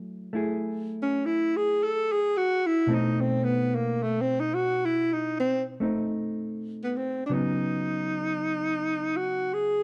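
A clean, dark hollow-body electric guitar opens this smoky, melancholic jazz ballad, fingered and placed up front, voicing an F#m9 chord at a slow 54 BPM in 4/4 with a gentle swung eighth-note feel. At 1.0 s a breathy alto saxophone enters with the melody, close-miked and equally forward, its subtone and vibrato giving it an intimate, jazz-style voice. The harmony moves to B7b9 under the saxophone solo, which runs until 7.3 s, where the passage shifts to a new section on a C#9sus4 chord. A moderate large-studio reverb with a 1.2-second tail surrounds the two instruments in a warm, shadowy production, and the tuning sits slightly sharp at A4 = 441 Hz. The recording is a short cut from a longer piece.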